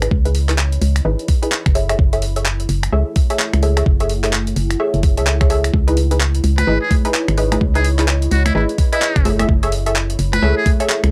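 UK garage in a two-step groove with a swung feel, this soulful, moody excerpt rides a chord progression that moves between C#m9 and F#m9. An overdriven, knocking electronic kick sits up front beside a hollow, organ-like FM bass with sidechain pumping, while a gritty, compressed sampler-style kit adds congas, finger snaps, handclaps and hi-hat through a cassette tape coloring. Punchy, detuned sawtooth chord stabs with a filter pluck carry chorus, analog delay and tape grit, and a filter sweep runs across them for the whole clip. Behind them, a deep, mellow ambient pad enters at 0.4 seconds, with chorus, its own reverb and sidechain pumping. At 6.6 seconds, a brilliant, buzzy trumpet with a metal mute takes a jazz-style solo until 10.7 seconds. The mix has a light reverb and the hazy character of a home cassette recording, and the passage is cut from a longer piece.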